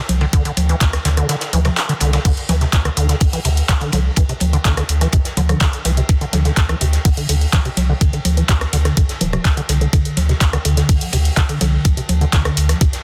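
Acid house at 125 BPM in D minor, a gritty, trippy excerpt cut from a longer piece, driven by a thumpy, sampler-style electronic kick sitting up front that drops out between 1.3 and 2.3 seconds. A round sine sub bass pumps under a rubbery, resonant square-wave acid riff with filter pluck, overdrive and delay, while a tape-warm analog drum machine adds congas, handclaps, rim clicks, hi-hat and crash. A saturated, rolled-off breakbeat kit with dark cymbals, hi-hat, ride and a medium-tuned snare sits low in a dry, dense, heavily limited mix.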